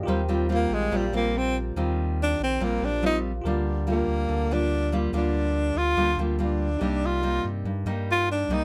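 A close-miked tenor saxophone, with vibrato and scooped notes, takes a melancholic, intimate jazz-style solo from 0.5 seconds in this brief bossa nova excerpt at 143 BPM, over a full-bodied fingerpicked nylon-string guitar, a deep, clean sine sub bass, and a bell-like tine electric piano sitting in the background through Eb69, Gm7/D and Cm7, all with little reverb.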